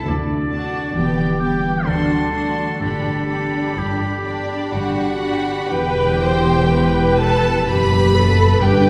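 A lush first violin section carries the melody high above the orchestra in this slow, lyrical romantic movement, moving at 60-68 BPM in a flexible, rubato 3/4 in G major before turning to E minor at 5.7 s. Beneath it, a second violin section sings a smooth, even second line, while the violas add an intense accompaniment full of vibrato and a concert harp rings out thumb-plucked arpeggios. A distant, roomy oboe weaves its own second line until 4.7 s. Cellos and double basses hold the bass with a rich, bowed tone, and soft-mallet timpani with round calf heads sound in the background at the opening and again from 8.6 s. The orchestra is heard from further back in a concert hall with a long, wet reverb, giving the warm mood a spacious glow, and the passage is cut from a longer piece.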